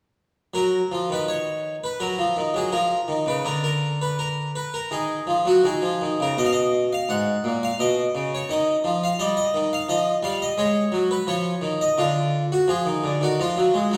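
The rhythm moves freely in a rubato 4/4, with the pulse bending and stretching as the phrases unfold. This short passage from a longer baroque-style suite movement features a solo harpsichord playing from 0.5 to 14.0 seconds, ranging from Ab2 up to Gb5. The Flemish-style instrument, with three sets of strings, has a plucked, full and brilliant tone and sits up front. A reverberant recital hall surrounds it, lending a sense of hearing it from further back in the room. The harmony settles on a minor home chord, drops away briefly at 3.5 seconds, and then moves through darker minor colours before passing through a major chord and a bare fifth to end on a diminished chord at 12.0 seconds. The mood is introspective and solemn, like a private meditation in a resonant space.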